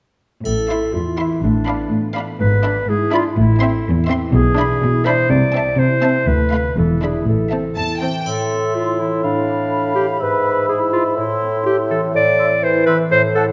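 Heard in a moderate scoring-stage reverb, this playful, whimsical cinematic cue in A minor at 124 BPM in 2/4 feels magical and sneaky, with a bowed violin section carrying the high melody over a second violin line touched with portamento, violas in the background, and rich cello and double bass sections below, while an up-front clarinet and a ringing, fingerpicked concert harp run throughout, a bright triangle sounds at the start and again at 8.3 seconds, when the strings give way to a hollow flute group, a distant cor anglais and a soft-attack, vintage-toned bassoon.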